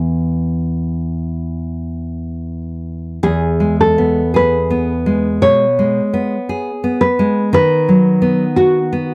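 A solemn, melancholic romantic duo for two fingerpicked nylon-string guitars opens in E minor: one sings a dark, full-bodied melody in a narrow upper range while the other supplies warm accompaniment reaching down to a deep low E, with finger squeak audible on its strings. The slow, rubato pulse of 48-58 BPM in 4/4 drifts freely as the harmony brightens to E major at 3.2 s and moves to B over D sharp at 7.5 s. Both guitars sit up front in a dry, close 1970s-style studio sound with light reverb, in a passage cut from a longer piece.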